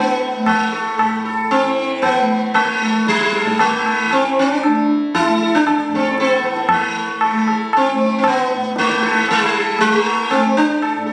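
Hindustani classical music in raga Bhimpalasi on A, introspective and solemn at 116 BPM in 3/4, with an up-front, plectrum-plucked sitar carrying the melody over its buzzing, shimmering sympathetic strings, a softly plucked tanpura drone sitting quietly beneath, and a high-tuned, short-ringing tabla entering at 0.5 seconds, all heard in a short cut from a longer piece captured on a phone in the room with light reverb and compression, the music shifting into a new section at 6.7 seconds.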